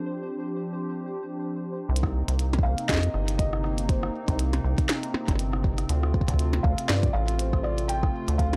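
Eerie and melancholic, this IDM fragment is cut from a longer piece and has a dry, gritty sound with a cassette-tape haze and a low-pass filter. It opens on a hollow, flute-like pad holding dark, detuned chords on Dm7, with a pulsing, tempo-synced gated texture carrying chorus and its own reverb as a filter sweep moves across the pad. At 1.9 seconds the texture stops and the harmony shifts to Cm7 as a rubbery, saturated acid bass enters up front, its resonant square-wave plucks striking fast and decaying. A deep electronic kick and a glitchy kit of tiny snare, clicky hats, rim clicks and percussion blips join at 2.0 seconds, both with studio reverb and a lightly swung sixteenth feel. From 2.6 seconds a felt-muted upright piano carries the melody, boxy and intimate, with tape echo trailing its notes, and at 5.9 seconds the chords return to Dm7.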